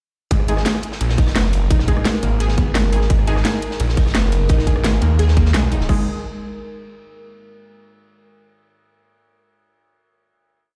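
This is a short, complete piece of dark technical drum and bass at 172 BPM in G# minor, futuristic and aggressive in mood, built almost entirely around a drop that runs from 0.3 to 5.9 seconds before settling on a final G#5 chord. Up front, a snarling distorted saw bass growls through chopped, overdriven phrases, while a tight, overdriven electronic kick punches out a broken-beat pattern. A layered drum and bass kit adds a cracking snare, bright closed and half-open hats, rim clicks and crashes, and a gritty, saturated acoustic breakbeat loop with dark, rolled-off cymbals sits in the background beneath it. A lush unison pluck runs a repeating 16-step arpeggio sequence through tape echo, and from 1.0 seconds a deep, moody ambient pad holds slow-attack sustained chords with chorus, both pumping with the sidechain. Bold, full-bodied orchestra-hit-like synth stabs punctuate the drop with sparse echoing power chords and return briefly at 5.9 seconds, all set in a big, reverberant bare-room sound.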